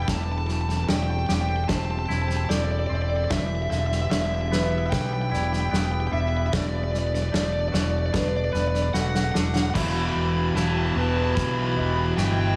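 A straight 4/4 pulse at 74 BPM drives this melancholic, cathartic post-rock passage, cut from a longer piece, where a roomy, distant indie drum kit with a punchy kick sits behind growling, overdriven fingered bass up front, beneath a dark, crunchy guitar melody with digital delay, twangy, compressed electric guitar arpeggios, hushed felt-muted upright piano arpeggios with audible action noise, and a calm, detuned organ-like pad with chorus sustaining chords through Am7/E, Em7 and Bm7/E, until a drum fill at 8.9 s leads into a build-up on Em where a picked, overdriven electric guitar riff with spring reverb enters at 9.7 s.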